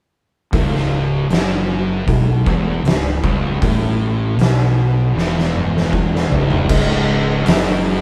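Stoner and doom metal with an ominous, sludgy mood, cut from a longer piece: two thick, dark fuzz guitars grind out a picked riff in the low register, backed by a growly, overdriven fingered bass and an oversized low-tuned drum kit that sits up front with a punchy kick, fat snare and dark cymbals. A drum fill runs from 5.2 to 6.7 seconds, after which a very quiet, mellow tonewheel organ enters with round, clean sustained chords through a slow rotary speaker. The band plays live in one room with moderate studio reverb, and the saturated, gritty kit carries a rolled-off top.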